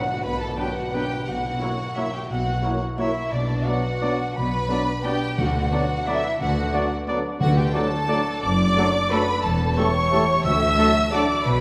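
In a 3/4 at 176 BPM with uneven, rubato beats, this elegant, festive orchestral ballroom waltz opens in B minor and turns to D major at 7.4 seconds, its distant, lush symphonic violins carrying the melody while a pure, hollow silver flute plays a second line in the background and a closer studio violin section adds another expressive second line with portamento. Underneath, dark, woody cellos and soft-attack double basses form the bass, a very quiet rich viola section accompanies, ringing fingerpicked harp arpeggios sit in the background, and brilliant, tight trombones and mellow French horns hold sustained chords behind a solo trumpet's classical stabs. Very quiet timpani with medium mallets on calf heads enter at 5.4 seconds, and the whole orchestra sits in a church or concert hall with a wet scoring-stage reverb.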